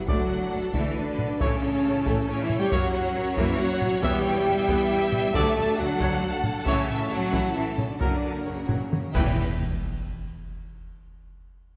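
In a 3/4 at 136 BPM with uneven beats, this fragment of an epic orchestral film score sounds dramatic and heroic, cycling through D, A, F# and Em. Violin sections carry an expressive melody with vibrato and portamento, joined by a second violin line that stays smooth and even, while distant violas and a dark, woody string section hold accompaniment and sustained chords in the background. Mellow French horns lead the brass with sustained harmonies, supported by a very quiet, vintage-tinged trombone section and a punchy solo trumpet adding stabs from afar. Rich cellos and double basses anchor the low end, and close-miked taiko drums struck with heavy sticks drive the piece, with round, soft-mallet timpani entering at 4.0 seconds. Near the close, dark clash cymbals and concert bass drum join from 9.1 seconds as a drum fill leads into a full ensemble accent at 9.4 seconds, where a huge, bright impact with sub drop rings out, all bathed in a wet concert hall reverb.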